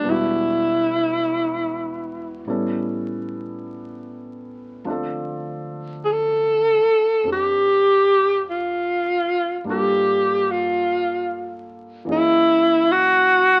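Melancholic and intimate, this slow jazz ballad at 50 BPM moves with a gentle swing as a breathy alto saxophone carries the melody up front, its clear, soft-attacked tone shaded with vibrato and scooped notes. A grand piano accompanies with natural, long-sustaining chords and audible action noise, while a woody pizzicato upright bass sits in the background. Light reverb and the crackle of a very old 78 rpm record give this fragment, cut from a longer piece, an aged, vintage sound.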